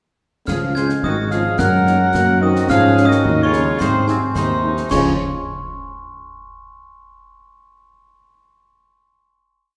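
Heard in a reverberant concert hall, this short, complete military-style march for wind band in Db major moves at 108 BPM in a festive, rousing 2/4. A dark trumpet section carries the melody from 0.5 seconds. A sparkling glockenspiel with brass mallets doubles it an octave higher, and a clear euphonium in the background doubles it in a lower octave. A punchy woodwind section doubles the tune in unison and in sixths, and the trombone section adds a tight counter-melody and sustained chords. A mellow tuba sits up front with bass on the beats, and a very quiet French horn section enters at 0.8 seconds with after-beat chords. A concert snare drum, clash cymbals and bass drum give a marching snare over the bass drum on the beat, before the band lands on a final Db chord at 4.9 seconds.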